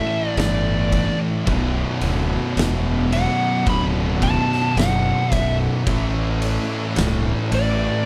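At a crawling 55 BPM in a straight 4/4, this brooding, heavy stoner and doom metal excerpt sets a compressed fuzz lead guitar with tape echo singing its melody over two thick fuzz guitars and a bright, double-tracked tight distorted guitar grinding riffs in the background, while a growly, overdriven fingered bass sits up front and an oversized low-tuned drum kit of punchy kick, fat snare and dark ride cymbal joins at 0.4 seconds in a pumping stone room, all moving from A5 through Bm to Am with little reverb.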